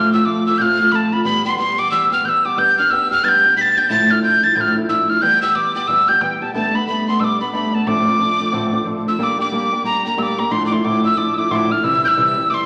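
Celtic folk in hornpipe form, this spirited, dark and lively passage is cut from a longer piece and moves with a swung 4/4 lilt. A breathy, mellow tin whistle carries the melody up front, its metal tone marked by vibrato, a crisp attack and a touch of chiff at the start of notes. Beneath it, a fingerpicked old ladder-braced acoustic guitar supplies the accompaniment, sounding woody and boxy with the dusky character of old strings. Both parts play throughout, set in a generous large-studio reverb that lends the pair a roomy sheen. At 9.2 seconds the music moves into a new section as the key shifts from D dorian to G dorian, and the harmony passes through G minor before closing on C.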